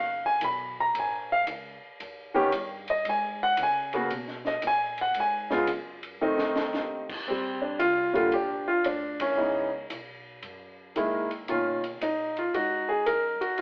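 Swinging eighth notes in 4/4 carry this relaxed jazz piano trio fragment, where an intimate baby grand with audible action noise and short sustain takes a solo up front over woody pizzicato upright bass, a dark compact cocktail kit with a high-tuned snare and punchy kick joins at 0.4 seconds, a drum fill arrives at 6.2 seconds and a band accent at 9.1 seconds, and everything sits in a stone-room reverb with a telephone-like sound.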